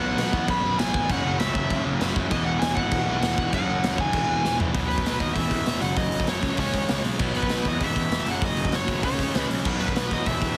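Upbeat and energetic, this punk rock clip is cut from a longer piece and opens with a smooth overdriven lead guitar carrying a picked melody through a delay, backed by a bright distorted electric guitar riff and a sludgy distorted guitar sitting in the background. A growly, fuzz-laden picked electric bass punches underneath, while an up-front raw garage drum kit, gritty and saturated with a pumping stone-room sound, a punchy kick and a rolled-off top, drives the straight 4/4 feel and throws in a fill from 4.4 to 4.7 seconds. Light reverb and a heavily compressed radio-style sound shape the whole mix.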